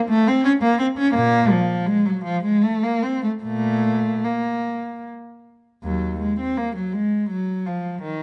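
Grave and introspective, this brief excerpt from a baroque-style classical suite movement for unaccompanied cello moves in a rubato 3/4 at roughly 73-86 BPM in Bb minor. The single bowed cello sounds warm and up front, with soft attacks, expressive vibrato and gliding portamento as it ranges from Eb2 to Db4, and its opening idea returns at 5.8 s. Close, detailed microphones catch the player, framed by a moderate recital hall reverb of 1.6 s.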